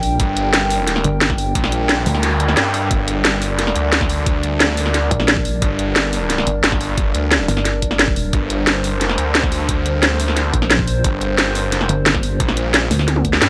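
Dark and tense, this fragment of a longer piece is technical drum and bass in a straight 4/4, sitting on a single G minor chord throughout. A deep, moody analog pad holds sustained chords from start to finish, its detuned, wave-folded tone softened by subtle chorus and pumped by sidechain compression. Underneath, a snarling distorted saw bass growls up front with a bright, overdriven edge, while a pulsing pluck wobble bass with a heavy, saturated character comes and goes, playing in bursts from 0.0 to 2.6 seconds, 5.1 to 8.3 seconds and again from 10.5 seconds. The drum kit sits prominently forward with a cracking snare, bright hi-hats and toms, joined by a knocking electronic kick that briefly drops out as a background noise sweep passes around 2.0 seconds. A drum fill closes the passage at 13.1 seconds, and light reverb lends the mix a compact sense of space.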